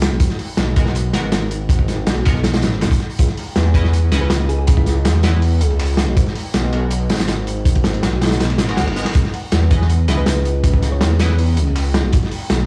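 Raw and nostalgic, this drum and bass cut in a jungle vein comes from a longer piece and rides a straight 4/4 feel. A crunchy breakbeat kit sits up front with a tight kick, saturated grit and a rolled-off top, while a very quiet, tape-warm sampler-style kit adds hi-hat and snare from deep in a large room behind it. Beneath them a dark detuned saw bass rumbles and beats, deep and sustained, carrying the low end through the whole cut. From 0.8 seconds a nasal, band-passed chord stab drifts in the background through phaser, analog chorus and dub echo, tracing a G#m to C#m7 progression. A round, tine-like pluck resembling a thumb piano surfaces briefly at 4.2 and 10.2 seconds with chorus and echo trailing its long release, and an electronic reverse cymbal rises at 8.6 seconds. The whole mix sounds as if played on a big sound system in a bare room, bathed in large studio reverb.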